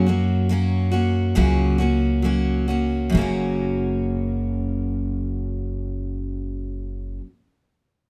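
A light reverb gives this short acoustic folk excerpt, cut from a longer piece, a gentle sense of space, with both instruments sitting up front. Set in F# major at a slow 66-72 BPM in a straight 4/4, the mood is warm and peaceful, and the pace eases during the opening 3.1 seconds before a second section begins. A picked steel-string acoustic guitar carries the accompaniment from F#2 to F#4, its fresh strings sounding bright and full-bodied, with the squeak of fingers audible. Beneath it, a pizzicato upright bass plays from F#1 to F#2, its tone woody, dark and thumpy. Both parts play together from the start, the bass stopping at 7.2 seconds and the guitar at 7.3 seconds.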